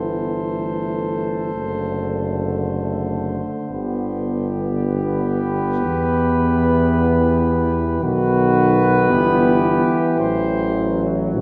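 A brass band opens together in a slow, rubato 6/8 hymn at 55 BPM, where a distant, roomy cornet carries the melancholic, elegiac melody over a flugelhorn second line, a euphonium and an up-front tuba bass, all four mellow, while a clear, punchy trombone section sits in the background, with light vibrato on the trombones, euphonium and tuba, as the classical harmony moves from G major into E minor at 5.8 s inside a recital-hall reverb heard from further back in the room.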